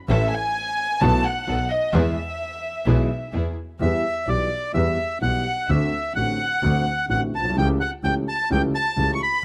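A dry, close 1970s-style studio sound in a small room frames this passionate, dramatic rubato tango, where an intimate chamber violin section with soft-attack sul tasto bowing carries the opening over a boxy, long-sustaining dark grand piano, an earthy, distant bowed double bass and smooth background string stabs that end at 3.5 seconds, before a reedy, up-front bandoneon takes the melody at 3.8 seconds.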